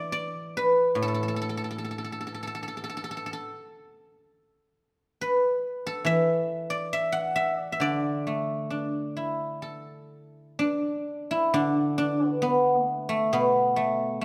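This is a short passage of Chinese traditional music for solo plucked strings, flowing and serene in mood. A single guzheng plays alone from 0.0 to 14.2 seconds, plucked with fingerpicks and placed up front, its ringing, silvery tone spanning from A2 up to F#5. The music sits in the D gong mode in 4/4, with a rubato feel that drifts between 58 and 73 BPM. A moderate recital hall reverb gives the instrument a gentle sense of space. The opening section unfolds until 11.6 seconds, when a new section begins and carries on to the end of the excerpt.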